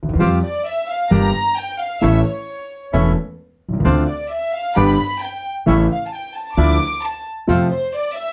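This passionate, sultry tango fragment, cut from a longer piece, opens at 0.0 s with an intimate, vintage-sounding concert grand piano, its deep bass and audible action noise sitting up front, alongside a woody, plucked upright bass. A reedy bandoneon adds stabs a moment later, and at 0.4 s a bowed violin section floats in above them, played sul tasto with a soft attack and a pure, close tone that carries the second line. The pulse is 132 BPM in 4/4 and D minor, but the feel is rubato. The harmony moves through Fsus2, Gm, A, Dm7, G and A before settling on Dmadd9 and F, all within a moderate studio ambience. Piano, bass and bandoneon stop at 7.7 s, leaving the violins to ring on alone to the end.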